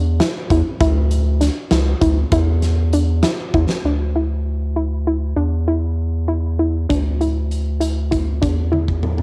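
In a straight 5/8 pulse, this bright, intricate progressive instrumental fragment alternates between Dsus2 and Dsus2/E while a soft, warbling pluck with chorus spins gentle arpeggios over a deep, nasal analog bass that sits up front. A big rock kit with a fat snare and punchy kick, colored by cassette tape, plays from 0.2 to 3.8 seconds, ending on a fill, then returns at 6.9 seconds. The whole take carries the intimate, small-room character of a home cassette recording.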